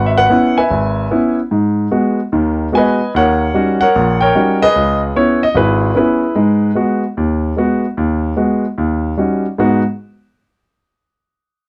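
A polished grand piano, present and up front, opens this cool, smoky solo jazz piece in G# minor at 149 BPM, swinging its eighth notes in 4/4 across a range from G#1 to G#5. The harmony circles through C#m7, G#m7 and D#7#9 under light reverb, and the piano plays until 9.8 seconds, just after the music settles back on G#m7 at 9.6 seconds in this brief cut from a longer performance.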